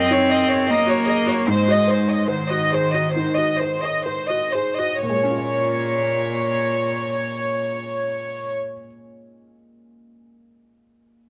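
Melancholic and fragile, this neoclassical piece for piano and strings drifts in a rubato 4/4 at 62-78 BPM in Bb minor, slowing through its first 5.0 seconds over Ebm7/Gb and Ab7 before settling on Bbm7. An up-front, floating violin section carries the melody with a pure, sul tasto tone, while a single dark cello with vibrato and a smooth top plays a close second line beneath it; both are bowed with a soft attack until 8.5 seconds. A felt-muted upright piano, mellow and intimate with audible action noise, accompanies from the start and carries on after the strings fall away until 11.3 seconds, heard within a small room ambience and moderate echo chamber reverb.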